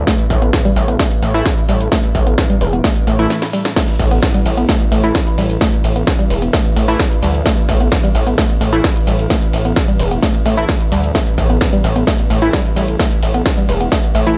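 Driving and hypnotic, this peak-time techno cut runs in a straight four with a distorted, up-front kick and a gritty, nasal synth bass pumping against it, while a layered kit adds cracking snare, metallic hats, ride and crash, dropping into a short break and drum fill at 3.3 seconds. A woody, wave-folded pluck carries the riff through chorus and dub echo, joined at 1.3 seconds by punchy, airy supersaw stabs with delay sitting in the background. Underneath, a very quiet, eerie FM drone warbles in a light digital ambience.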